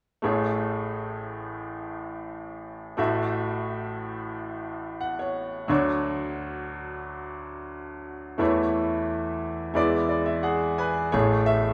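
Light reverb gives this short folk piece a gentle sense of space, with a bright upright piano placed up front and ringing with long sustain. The mood is heartfelt and nostalgic, moving at an unhurried 88 BPM in a straight 4/4 in A major. The piano carries the melody across a span from A1 to G#5, its tone brilliant and open with a woody edge, and it adds short fills at 4.7 and 9.8 seconds. The harmony drifts from Amaj7 through F#m7/A, Dmaj7 and A/E to an E7 that leads back home. At 11.1 seconds a pizzicato upright bass enters on a single dark, acoustic A1 beneath the returning Amaj7. The passage is cut from a longer piece.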